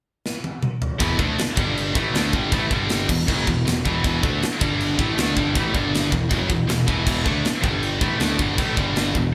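Played live in one room with a moderate stone-room reverb, this epic, relentless heavy metal cut opens on a drum fill from a tight, polished acoustic kit with bright china and crash cymbals, a medium-tuned snare and a tight kick sitting up front. At 1.0 seconds two distorted guitars enter on a picked riff moving through E5, G5 and Em chords: a scooped, high-gain one placed up front and a second, tight one just beneath it. Under the straight 4/4 drive, an overdriven, growly, punchy bass sits in the background.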